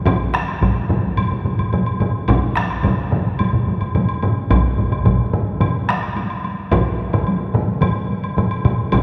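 Hard-stick solo taiko drums sit up front in this driving, ceremonial Japanese taiko passage at 108 BPM in a straight 4/4, cut from a longer piece. Three taiko ensembles fill in beneath: one struck with heavy sticks and sounding compressed and saturated, one set back in a small room, and one with a vintage, band-limited tone, while a woody woodblock adds a quieter layer. The ensemble plays from about 0.1 seconds to 9.0 seconds, bathed in the long, wet reverb of a church or concert hall.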